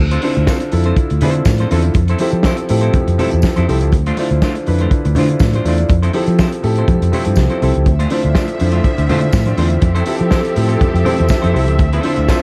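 A straight 4/4 disco groove at 122 BPM drives this joyful, celebratory clip cut from a longer piece, with a punchy, up-front fingered electric bass and a muffled, lo-fi soul drum kit with a fat snare and tight kick, while ringing congas and a jingly tambourine sit quietly in the background. A clean, hollow-toned semi-hollow electric guitar and an intimate, boxy grand piano with audible action noise move between Dm7 and Fmaj7, the piano adding a fill at 10.8 seconds. At 7.9 seconds a lush, focused studio string section enters with bowed sustained chords and vibrato, all within a dark production touched by light reverb.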